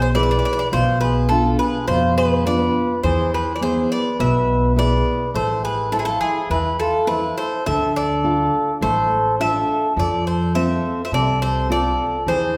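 Set in the lingering reverb of a recital hall, this brooding Greek folk fragment at 104 BPM in straight 4/4, tuned to A4 = 436 Hz, puts a bright, metallic double-strung bouzouki up front on the melody over a reedy, round accordion second line, fingerpicked steel-string acoustic guitar and woody pizzicato upright bass, all playing together through nearly the full 12.6 seconds as the chords move from E through Bdim, Am and Dm to F.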